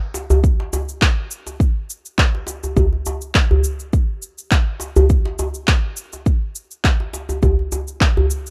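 Electronic shaker and handclaps with a tape-warm tint open this hypnotic downtempo excerpt at 0.1 s, alongside a tight, cracking acoustic djembe played with hard hands in a small room. A deep, layered electronic kick joins at 0.4 s, and all three parts sit up front in a groove at 103 BPM in 4/4 with a light 16th-note swing. The sound is dry, with the feel of a rough home demo mix.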